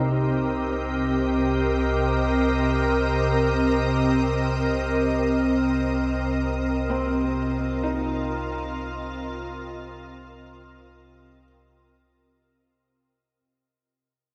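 This ambient excerpt feels peaceful and weightless, opening on a Cm7 chord and beginning to fade out from 3.5 seconds until it ends at 13.4 seconds. A soft, organ-like pad sits up front, holding pure, bright sustained chords that bloom slowly and linger with a long release, thickened by ensemble chorus and its own reverb. Tucked in the background, a felt-muted upright piano plays mellow, intimate arpeggios with audible action noise and a vintage character, carried by an analog delay. Underneath, a deep, rumbling drone holds a single low note, its dark and ominous tone colored by a phaser and reverb. The whole mix is echo-heavy, washed in a wet spring reverb.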